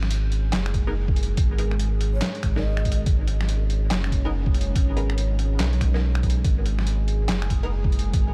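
An excerpt from a longer deep dubstep piece opens on a dark analog pad holding sustained G# minor chords, thickened with chorus, phaser and a vintage 12-bit sampler grit, over a saturated sub bass that sits deep, thick and up front. A trip hop sampler-style kit of finger snaps, handclaps, hi-hat and a medium-tuned snare sounds pitched down, compressed and tape-warm, as if re-recorded in a small room, and a thumpy electronic kick joins at 0.7 s. The mood is dark and meditative at 142 BPM in 4/4, with a half-time feel and a swing on the sixteenths. Muted, detuned chord stabs with a short filter pluck drift in the background from 0.9 s, washed in phaser, lush chorus and dub echo. Between 2.1 and 3.0 s a breathy, mellow shakuhachi line with vibrato and a chiffy bamboo attack floats far behind, trailed by dub echo, all set in a digital ambience.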